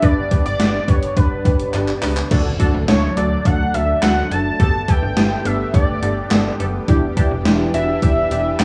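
A gated 80s digital drum machine sits up front in this driving, melancholic synth-pop passage at 105 BPM in straight 4/4. It has a thumpy kick, a gated-reverb snare, handclaps, hi-hat and crash, with a sampler-style, tape-warmed character and a fill from 1.7 to 2.3 seconds. A slap-like FM bass adds snappy, metallic, decaying notes underneath. A bold, retro octave-doubled lead carries the melody, bright and detuned with vibrato, chorus, cassette tape color and analog delay. A punchy, funky polysynth comp with a mellow filter pluck and chorus fills the middle, while a lush, thick unison pad with chorus and phaser holds sustained chords in the background. The chords move from G to D at 2.3 seconds, where a very quiet electronic impact sounds, then through Gadd9 to Em7, all in a tuning of A4 = 441 Hz with light digital ambience and a small-room, home-cassette feel in a section cut from a longer piece.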